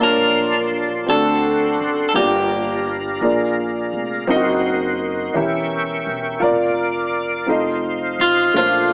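Gospel in 6/8 at a slow 56 BPM in Bb major, soulful and uplifting, this short section moves through rich chords from Bbmaj9 to a closing F7 over an upright piano with audible action noise and a dark, thumpy pizzicato upright bass on gut strings, while a clear, percussive tonewheel organ holds sustained chords with key click, chorus vibrato and a slow rotary speaker. A clean, picked electric guitar and a mellow saxophone section with light vibrato and a soft attack carry the melody together until about 3 seconds, then return briefly at 8.2 seconds. A moderate scoring-stage reverb surrounds the parts, and the whole piece has an AM-radio sound.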